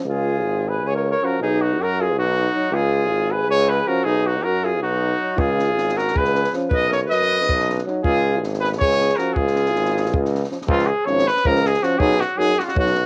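Wild and exuberant, this Balkan brass band excerpt in 7/8 puts a clear trumpet melody with vibrato up front, shadowed by a smooth-topped alto saxophone second line that drops out at 10.3 seconds. Two euphoniums hold the accompaniment, one mellow and set in the background, the other vintage with vibrato, over a prominent tuba bass line, while a dry, compact cocktail drum kit with a high-tuned snare and punchy kick joins at 5.4 seconds. The harmony swings between Db and Cb, and the home cassette recording carries a light, small-room reverb.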